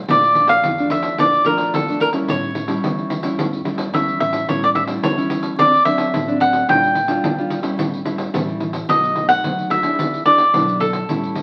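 Samba and choro at 109 BPM in 4/4, a lively, nostalgic fragment of a longer piece that sounds like a very old 78 rpm record, with vinyl crackle over a wet studio reverb. A bright, crisp, picked cavaquinho carries the melody up front. A fingerpicked classical nylon-string guitar with fresh strings and audible finger squeak plays the accompaniment through chords such as Bbmaj7, A7 and B7, while a woody pizzicato upright bass sits in the background and a jingly pandeiro, played with soft hands and given a compressed, saturated edge, keeps the percussion going from 0.1 s to the close at 11.4 s.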